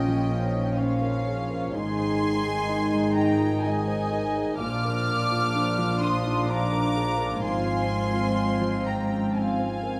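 Cinematic, emotional film score in a rubato 3/4, moving and bittersweet, where a warm violin section carries the melody over a clear, floating second violin line, dark sul tasto violas, a soft felt-muted upright piano in the background, mellow French horns holding sustained chords, and a bass of pure-toned double basses and intimate cellos, heard within a moderate scoring-stage reverb.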